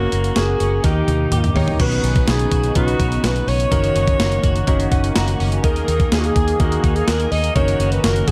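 Dark, warm production with light reverb frames this moody, dramatic 1980s-style pop piece at 125 BPM, where a breathy, whispered alto saxophone carries an intimate melody over a deep-toned concert grand piano, a clean, compressed twelve-string electric guitar riff with ensemble chorus, a round, punchy, foam-muted fingered bass, and an up-front 12-bit drum machine with a thumpy kick whose fill at 0.8 seconds leads into a brassy, nasal analog pad with chorus that enters at 1.8 seconds, before the piano adds a fill at 4.7 seconds.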